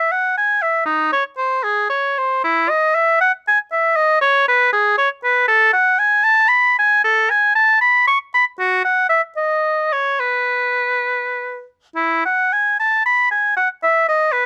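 Introspective and grave, this short passage from a longer baroque-style classical fantasia features a single unaccompanied oboe. The music moves in a rubato 6/8 at roughly 61-81 BPM counted in dotted quarters, giving it a free, searching feel. The oboe's tone is clear and carries a light vibrato, played in a classical style and placed up front, spanning D#4 to C#6. Close, detailed microphones capture every nuance of the solo line, set in a light reverb. The opening section runs to 12.0 seconds, when a new section begins and carries the oboe through to the cut at 14.5 seconds.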